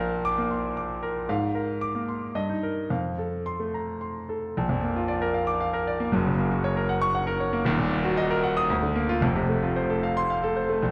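Heroic and brilliant, this excerpt from a virtuoso classical piano study in a rubato 3/4 features a solo concert grand that sounds bright, polished and up front with deep bass and short sustain, ranging from Eb1 to Eb6 as its harmonies move from Bb major through a darker turn to Gb and Eb minor after 4.6 seconds, all set in a wet recital hall reverb within a dark production.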